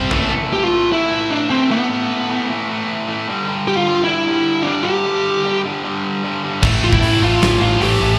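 Driving and heavy, this hard rock excerpt in A minor moves at 152 BPM in a straight 4/4, opening with a brief drum fill before a smooth overdriven lead guitar carries the melody from 0.5 seconds, its bright, up-front tone trailed by digital delay over a picked, overdriven rhythm guitar riff with slapback echo and chords shifting from A5 to G5 and back. At 6.6 seconds the full band crashes in: a huge arena drum kit with a fat snare, punchy kick and bright cymbals, a growly, amped picked electric bass, a tight distorted guitar sitting in the background, and a very quiet double-tracked distorted electric guitar. It all sounds like a live gig heard through the venue's PA, wrapped in club reverb.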